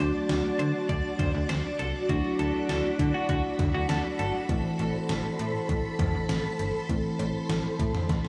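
A snappy FM bass with a metallic, slap-like attack underpins this melancholic, nocturnal synth-pop excerpt, its digital notes sitting low and decaying. A gated 80s digital drum machine comes in at 0.3 seconds with a thumpy kick, an overdriven gated-reverb snare, hi-hat, cowbell and toms, and it sounds re-recorded in a small room. Muted, felt-like synth keys add a soft, warbling, dark accompaniment with chorus, while an organ-like ensemble string part holds sustained chords under a vintage ensemble chorus. A bright, twangy twelve-string electric guitar plays a clean, picked second line with subtle chorus and diffuse delay until 4.3 seconds. The harmony moves from D to Amadd9, a drum fill arrives at 8.1 seconds, and a huge ambient reverb soaks the mix in a dreamy haze.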